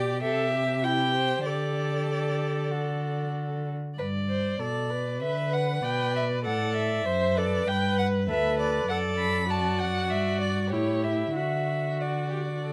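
Lively and spirited, this quick classical-period movement for string quartet moves at 97 BPM in a straight 4/4. It opens in G major and turns toward D major from 8.9 s, all within a short passage cut from a longer piece. The first violin carries the melody up front with a rich, smooth, even tone and vibrato, singing between B4 and B5. The second violin adds a warm second line with a smooth top, while the viola's clear, close accompaniment sits just beneath. Underneath, the cello holds the bass from D2 to D3, up front and close, playing expressively with a soft attack, vibrato and touches of portamento. Light reverb surrounds the four bowed players, each heard as a single instrument throughout the 12.7 seconds.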